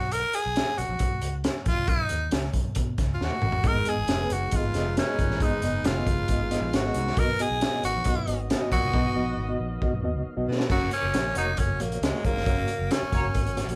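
A raspy, close-miked tenor saxophone leads this joyful, uplifting slice of uptempo 1960s-style soul at 136 BPM in F# major, its edgy tone carrying vibrato and scooped notes up front from the first second and taking a solo from 10.7 seconds to the close. Beneath it, a foam-muted fingered electric bass gives a dark, round bottom, while a crunchy breakbeat drum kit with a high-tuned snare, punchy kick and dark cymbals sounds saturated and gritty in a small room. After a drum fill, at 3.6 seconds the band fills out: a reedy electric piano with fast tremolo plays accompaniment through its built-in speakers, a lightly overdriven tonewheel organ holds very quiet chords through a slow rotary speaker, and a breathy baritone saxophone with a soft, subtoned attack sets a low riff in the background. A vintage-sounding horn section adds a second line behind them from 4.5 seconds. The harmony moves from B5 through G#m and B to F#, and the whole performance has the feel of a band playing live in one room with light reverb, cut from a longer piece.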